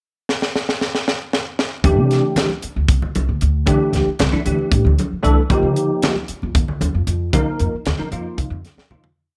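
A tight funk drum kit with a high-tuned snare opens with a fill at 0.3 seconds before this short, funky and driving electric jazz fusion piece in 7/8 at 230 BPM settles into its D phrygian groove at 1.9 seconds. From 1.8 seconds a woody, thumpy pizzicato upright bass plays a syncopated riff, softly played ringing congas add an evenly spread pattern, and a bell-like tine electric piano with ensemble chorus punches out bright quartal chord stabs over D9sus4 and F9sus4, all under light reverb until a fade-out begins at 7.3 seconds.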